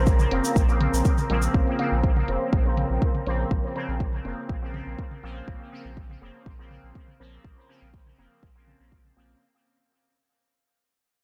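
Hypnotic and cavernous, this dub techno excerpt in Bb minor moves at 122 BPM in a straight 4/4, resting on a Bbmadd9 chord and fading out across its full 9.4 seconds. An up-front deep kick and dark, low-pass-filtered hi-hats sit over a round sine sub bass that pumps under sidechain, while a juicy, resonant sawtooth polysynth plays filter-swept stabs through chorus, phaser and dub echo. Overdriven analog toms and congas with dub echo sit in the background beside an airy, breathy wind-like noise texture held on Bb4, a grainy, bright tube shaker is heard only until 1.5 s, and the mix sits in a light reverb.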